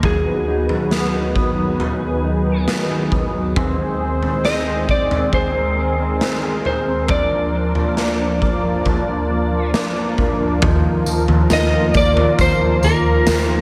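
Floating and dreamy, this dream pop excerpt drifts along at 68 BPM in a straight 4/4, bathed in a huge ambient reverb with a long, hanging tail. An electric slide guitar carries the melody between Ab4 and Eb5, its slightly broken-up tone trailed by delay, while a mellow electric guitar plays dark, clean, compressed arpeggios below it through lush chorus and delay. A smooth, detuned sawtooth pad with a soft attack holds sustained chords, moving from B to Ab to Bb before settling on Ebsus2 at 10.6 seconds. Up front, a raw garage drum kit of kick, snare, toms and tambourine sounds saturated and gritty, with a punchy kick, a medium-tuned snare, a rolled-off top and a pumping stone-room character. At 10.6 seconds a vintage muted fingered bass enters on Eb2, round and foam-muted, sitting in the background of the mix.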